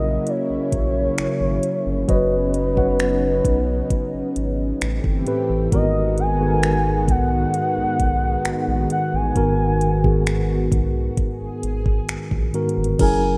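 A rough home demo mix with light reverb carries this moody, late-night contemporary R&B excerpt at 66 BPM in G# minor, where a smooth, gliding portamento lead with a detuned sawtooth tone, vibrato, chorus and tape echo sings over a mellow tine electric piano, a lush, warbling unison pad with chorus, a round, deep analog bass and an up-front electronic drum kit of knocking kick, metallic hats, finger snaps and crash cymbal that enters at 0.3 s, as the chords move from F#7 through Badd9/F# and Am7 to G#m7.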